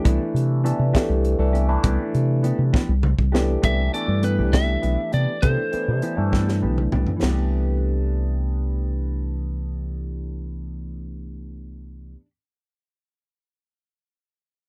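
A straight 6/8 pulse at 67 BPM, counted in dotted quarters, drives this slick, funky electric jazz fusion piece in C major, opening on a Cmaj9 chord, where a crisp, gritty drum kit with a punchy kick, high-tuned snare and bright cymbals plays fills before dropping out at 7.4 s; a round, dark fingered bass sits up front; a barky tine electric piano with phaser accompanies; a mellow, clean electric guitar with analog chorus adds stabs; and a slightly broken-up lead guitar carries the melody from 3.6 to 6.6 s, in a close, dry sound with little reverb.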